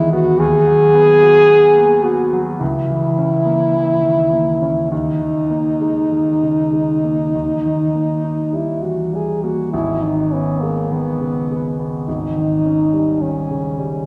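Romantic classical music for French horn and grand piano, melancholic and elegiac, moves slowly at 49-56 BPM in 4/4 with a rubato feel: the roomy, distant-sounding horn sings the melody up front with a light vibrato while the warm, present piano accompanies beneath it through a brooding progression that settles from D#sus4 to D# and on to G#m, and the whole 14.1-second fragment, cut from a longer piece, is heard from further back in a wet concert hall with a long 2.1-second reverb.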